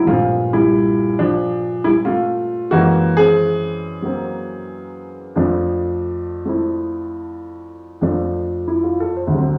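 A swinging 4/4 at 91 BPM, with the eighths swung at 68%, carries this short solo jazz piece in F major, a 9.6-second excerpt cut from a longer performance. A single baby grand piano plays alone, its warm, natural, up-front tone ranging from D2 to C5 as it moves through Gm11, Gb9 and F6, tuned a touch high to A4 = 444 Hz. A wet large-studio reverb places the sound further back in the room, giving the swinging, warm mood a spacious glow.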